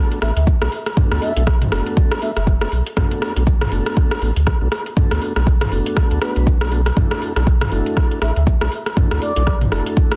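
Mellow tonewheel organ stabs open this hypnotic, driving afro house excerpt at 120 BPM in B minor pentatonic, their soft, flute-like tone carrying key click, a slow rotary speaker, vintage 12-bit sampler grit, tape echo and sidechain pumping. A deep house kit of metallic hats, rim click and toms arrives almost at once, overdriven, layered and up front, with a 58% swing on the 16ths. An overdriven electronic kick joins at 0.5 s, and like the kit it was re-recorded in a large room. A round sine sub bass, deep and sustained with a fast attack, anchors the low end with its own sidechain pumping, while a pure bamboo bansuri with vibrato and digital delay sits in the background, briefly at the start and again from 8.2 s. The harmony moves from Bm7 to Dadd9 at 7.0 s, all within a dense, heavily limited modern master with little reverb.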